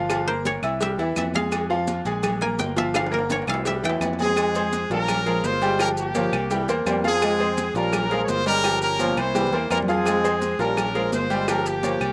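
This fiery, danceable salsa excerpt moves at 169 BPM in a straight 4/4, set in F harmonic minor with chords cycling through Gm7b5, C, Fm and Bbm7. A dry, woody koto played with fingerpicks carries the opening melody, backed from the start by a bright, worn concert grand piano with deep bass and a slapback echo, and a round, punchy fingered electric bass. Congas with a thin, high-tuned skin, ringing agogo bells and timbales with their own slapback, compressed and saturated claves, grainy maracas and a tight, distant cowbell sit in the background of the percussion bed, with a drum fill arriving at 2.9 seconds. At 4.2 seconds a brilliant, up-front horn section takes over the melody, joined by a mellow trombone section with light vibrato and a smooth top playing a second line. The recording was made outdoors and is nearly free of reverb, with the horns standing out as the loudest voice.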